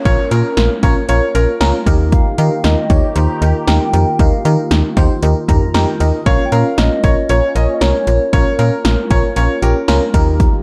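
A faint downlifter, a sweeping resonant pad and a hollow, woody clarinet-like synth lead with vibrato open this cool, melancholic synth-pop excerpt, joined at once by a glassy FM electric piano, a snappy slap-like FM bass up front and an overdriven deep house kit with deep kick, punchy snare, metallic hats, cowbell and toms, while a bright baby grand piano with tape echo plays a brief second line and returns at 6.3 s after an electric piano fill at 5.2 s, and the lead stops at 8.8 s within a dark production bathed in light digital reverb.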